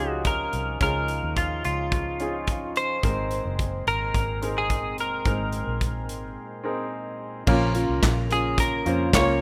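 Driving and earnest, this piano-driven pop clip sets a twangy, up-front clean electric guitar melody over clear concert grand piano, a reedy tonewheel organ in the background, a round, punchy muted electric bass and a modern drum kit with a tight kick, handclaps and crash cymbal, before a break at 6.4 seconds gives way at 7.5 seconds to a woody, fingerpicked steel-string acoustic guitar riff, all in a rough home demo mix with light reverb.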